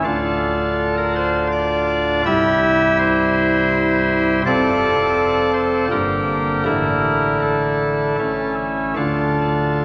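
Classical chorale-style music for pipe organ, this solemn, grave fragment is cut from a longer piece and moves in a flexible, rubato triple metre. A single organ part carries everything, voiced on a cornet solo stop with a nasal, baroque character and an audible chiff at the start of each note. The stop sits up front and spans a broad register from deep bass to the upper treble. The harmony passes through C, F and G minor before an A suspension resolves to A and the phrase settles home on D minor at 9.0 seconds. A wet church reverb with a long 3.3-second decay surrounds the organ, and the instrument is tuned slightly below modern concert pitch, at A4 = 435 Hz.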